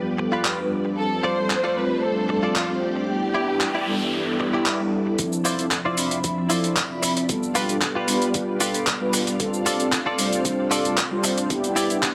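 A sleek, sensual nu-disco passage at 114 BPM in D dorian, cut from a longer piece and bathed in a moderate plate reverb, where gritty, tape-warm sampler-style drums with handclaps, hi-hat and shaker sit up front beside round, detuned synth brass that pumps against the sidechain through chorus and cassette-tape colour. A lush string machine holds full-bodied chords, a bright, twangy clean electric guitar picks a riff through analog chorus and tape echo, and a dark, bowed violin section carries the melody only until 4.4 seconds. An electronic noise sweep runs from 3.4 seconds into a build-up at 5.2 seconds, where a thumpy electronic kick enters in the background and a filter sweep moves across the string machine over chords cycling from Dm9 through G7, F6 and Em7.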